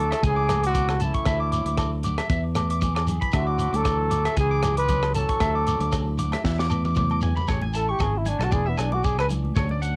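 A lightly swung 116 BPM groove in 4/4 drives this sunny highlife guitar band excerpt in A major, where a dark, breathy trumpet sings the melody up front with vibrato and scooped notes over a buzzy, metal-muted trombone second line that stops at 6.2 seconds, twangy slightly broken-up electric guitar accompaniment, compressed background guitar arpeggios with analog delay, a round fingered bass, a tight funk kit with a high-tuned snare, ringing agogo bells, grainy shekere and hard-handed congas, all captured with light reverb on a cassette home recording, with a drum fill at 6.5 seconds leading into a trumpet solo from 7.5 seconds.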